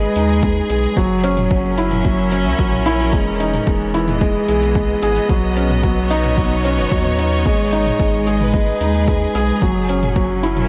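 Moving and cinematic, this piano and strings electronica fragment sits in G# minor at 111 BPM in a straight 4/4, cycling through G#m, F#7, Emaj7 and Badd9. A soft, felt-muted upright piano plays a mellow, intimate riff up front, with audible action noise and a digital delay. It rides over bright, bowed string-section chords with vibrato and sidechain pumping, and a round sine sub bass with tube saturation and the same pumping. The deep house kit enters at 0.2 s with metallic, overdriven hi-hats and toms, and a deep, overdriven electronic kick joins at 0.4 s, set in a light reverb.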